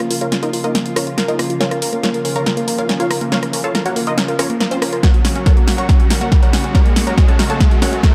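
Soaring and emotional, this uplifting trance excerpt at 140 BPM in Bb minor is a build-up, with a detuned sawtooth unison pluck carrying the melody through a filter sweep and delay, over a thick, airy pad holding chords and a round, evolving analog pluck playing arpeggios in the background, all three pumping with sidechain. A punchy analog drum machine plays a fill of overdriven snare, rim click and pumping hi-hats, while a background riser enters at 1.9 seconds. At 5.0 seconds the chords move from Bbm to Gb as a dry, overdriven electronic kick drum arrives up front, all set in light reverb.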